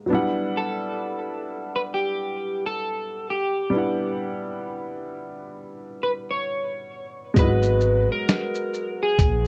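A slow, swung 66 BPM pulse in 4/4 carries this melancholic, hazy lo-fi hip hop fragment, cut from a longer piece and heard through worn, warbling cassette tape with light reverb and a warbly pitch drift. A slightly detuned upright piano opens at once with intimate, woody chords over Em9, its action noise audible, and an electric guitar through a small old amp joins at 0.6 seconds with a dark, slightly broken-up picked melody coloured by analog chorus. At 7.4 seconds the harmony moves to G#m9 as a pizzicato upright bass with steel strings enters, thumpy and bright, alongside a muffled, pitched-down sampler-style kit of thumpy kick, medium-tuned snare, hi-hat and shaker carrying 12-bit grit. The drums drop out at 9.4 seconds while the other parts ring on to 9.5 seconds, every instrument sitting up front in the mix.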